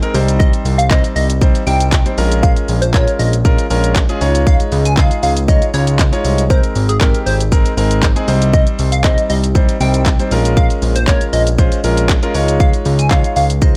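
Set in a digital ambience, this euphoric, carefree dance-pop excerpt pairs a punchy, layered electronic drum kit of kick, handclaps, shaker and warm hi-hats with a fat, saturated sawtooth analog bass that sits up front and pumps under sidechain compression. An intimate concert grand piano with audible action noise and long sustain pumps the same way through a cycle of Cm, Bbm7, Dbadd9 and Abadd9. From 0.4 seconds a catchy, mellow unison lead carries the melody, its detuned square-wave tone, noise layer, filter sweep and moving notch trailed by digital delay.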